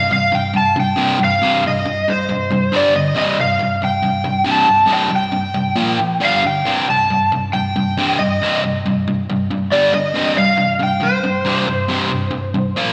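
Aggressive and menacing, this straight-ahead rock passage in C dorian at 137 BPM, tuned to A4 = 436 Hz, sets a dark, overdriven lead guitar through a small cranked amp with slapback echo, singing the melody from C5 to A5, over a bright, double-tracked distorted guitar riff low in the range, both picked and up front, as the chords move among C5, G5 and Bb5 inside a lush digital hall that gives this 12.9-second fragment of a longer piece a big arena sound.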